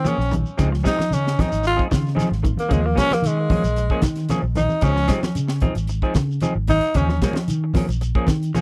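Driving and hypnotic, this afrobeat excerpt is led by a raspy, gritty tenor saxophone soloing up front with vibrato, scooped notes and tape echo until it drops out at 7.2 seconds, over chords that alternate between Eb9sus4 and Dbmaj9. A growly, amped fingered bass and a tight funk drum kit with a high-tuned snare and tight kick drive the groove. A clean picked electric guitar plays arpeggios with harmonic tremolo in the background, a dark semi-hollow guitar adds lush chorused stabs, and low-tuned ringing congas and a grainy shekere fill out the percussion in a dry, close 1970s-style studio sound.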